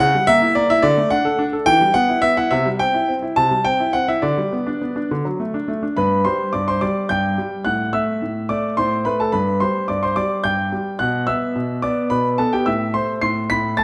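Playful and graceful, this excerpt from a classical-period piano sonatina in G major moves at 72 BPM in a straight 6/8, its solo grand piano sounding clear, intimate and up front with audible action noise, ranging from G2 to C7 inside a wet recital hall reverb, as the opening section gives way at 6.0 seconds to a second section built on G, D7/A and G/B harmonies before closing on A minor.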